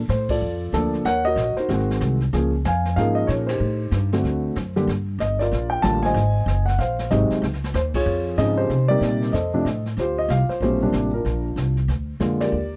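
A dry, close 1970s-style studio sound frames this relaxed, warm jazz piano trio excerpt in Bb major, swinging at 188 BPM in 4/4. A dark concert grand carries the melody, mellow and intimate with audible action noise, over a woody, growly pizzicato upright bass that sits up front, while a brushed kit with dark cymbals and a boomy kick sits further back. The band adds a few scattered accents while moving through harmonies like Ebm7, Am7b5 and Dbmaj9 before a new section opens on Bb69 at 10.0 seconds.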